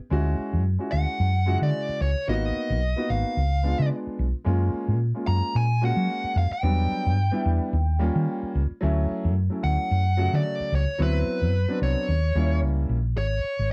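At 110 BPM in 4/4, this electric jazz fusion piece rides a light 16th-note swing, its mood intense and nocturnal. A round, punchy hollow-body short-scale electric bass, fingered and amped, sits up front from the first moment and carries the low end through to the close at 13.7 seconds. A baby grand piano enters at 0.1 seconds with open, long-sustaining accompaniment in the middle register, moving through lush extended harmony that opens on Dmaj9#11 and passes through G#m9, C#7b9 and F#maj9 before later turns to Em9, D13 and D#7b9. At 0.9 seconds a smooth, picked lead guitar takes the melody high above, its dark overdriven tone doubled by a slapback echo. The sound is dry and close, a 1970s-style studio recording with little room around the players, and the passage is cut from a longer piece.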